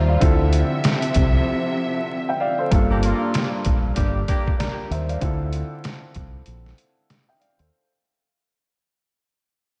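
A round, punchy fingered electric bass anchors this reflective, dark boom-bap hip-hop cut at 96 BPM in G dorian, swung on the sixteenths, beneath a gritty, pitched-down sampler drum kit with a thumpy kick and a woody upright piano placed up front. Lush bowed strings carry sustained chords until 2.7 s, when the whole piece begins to fade out, and a mellow, tight jazz horn section adds delayed stabs from 2.9 s. Lo-fi cassette-tape colour on the piano, vinyl crackle and a moderate, lush hall reverb give the mix a dreamy, hazy feel, with brief breaks thinning out the groove.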